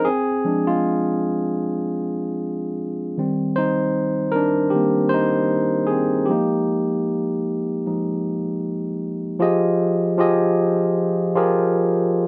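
A light reverb and a live-room sound surround this short fragment of smooth, silky soul, set to a relaxed swung sixteenth-note feel. A single tine electric piano carries everything, bright and barky, lightly overdriven through a combo amp and placed up front, playing solo from 0.0 to 9.4 seconds and continuing to 12.3 seconds. Its chords move from Fm6 to Eb6 and settle on Fm11, with the same section repeating before the clip cuts off.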